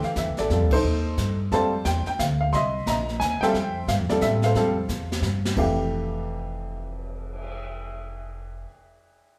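Sophisticated and swinging, this short cut from a longer jazz piano trio piece moves at a brisk 178 BPM in 3/4, with a swung eighth-note feel in F major. A worn, intimate baby grand carries the melody from F2 to C6, sitting up front with a short sustain and audible action noise. Beneath it, a pizzicato upright bass with gut strings gives a woody, thumpy low line, and a brushed drum kit with dark cymbals, a medium-tuned snare and a boomy kick adds crash, hi-hat and a cymbal swell, plus a fill from 4.9 to 5.6 seconds. A band accent lands at 0.7 seconds, and the harmony moves through colors such as a rootless F7, Dm11 and C7#9 before settling on Fmaj9. The trio sounds like a live band in one room, bathed in a large studio reverb, with the drums dropping out at 7.5 seconds while bass and piano carry on briefly.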